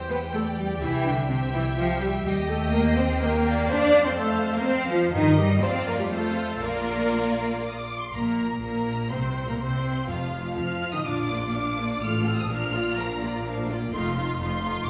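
A quick classical-period movement for string orchestra, this lively, graceful passage in triple time moves with a flexible, rubato feel and is cut from a longer piece. Two violin sections carry the top: the first sings the melody high above the staff, while the second traces a supporting line beneath it, both sounding clear and intense with vibrato yet set at a distance. The viola section fills in the accompaniment with a rich, even tone, and the cellos and double basses share the bass, the cellos focused with a smooth top and the basses light in vibrato and a touch remote. The whole ensemble sounds lush and bowed, heard from further back in a recital hall whose wet reverb lends the strings a soft halo. Around 8.1 seconds the harmony briefly drops away before a new phrase settles back toward the home chord, ending poised on a dominant seventh at 13.9 seconds.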